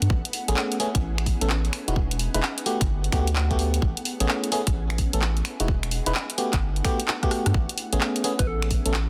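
Sunny and soulful, this short cut from a longer two-step UK garage track rides a swung 4/4 groove over lush major-ninth chords moving from Amaj9 to Emaj9 and Gmaj9. A tight, tape-warm electronic kick sits under an up-front garage kit of finger snaps, handclaps, hi-hat and rim click, both touched by small room reverb, with soft clipping on the snare and a brief drum fill at 7.2 seconds. A deep, round dub sub bass with sidechain pumping holds the low end, while a glassy, bell-like FM electric piano plays chorused stabs with delay. Behind them, a very quiet silky string machine with phaser sustains the chords, and an ethereal, detuned pad with ensemble chorus and its own reverb pumps gently in the background. Near the close, at 8.4 seconds, a gentle, keys-like synth lead slips in with a brief bright, warbling phrase, all wrapped in a light reverb and a dense, heavily limited modern master.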